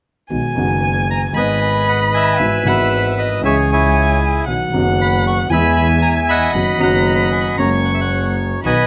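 A dusky bowed violin, a mellow vintage grand piano with audible action noise and deep bass, and a woody, nasal bowed double bass open this nostalgic, passionate tango in B major at 0.3 seconds, moving at 115 BPM in a rubato 4/4. At 0.8 seconds a reedy, bright bandoneon takes the melody up front, with the vibrato violin as a second line and the piano accompanying through chords such as G#m, C#m and F#add9. Near the end, at 8.6 seconds, a lush, distant string section adds brief stabs in the background, all set in a moderate studio reverb within this excerpt from a longer piece.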